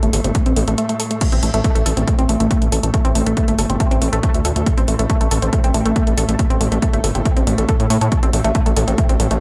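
A gritty, aggressive synth bass, a nasal analog pluck riff drenched in chorus, phaser, tube saturation, tape echo and cassette grit, a very quiet eerie metallic drone, and overdriven crash and hi-hat pumping against the sidechain open this intense, industrial peak-time techno clip, with a punchy, tape-warm kick entering at 0.3 seconds and a brief break following from 0.8 to 1.2 seconds in a lightly reverberant, echo-heavy mix.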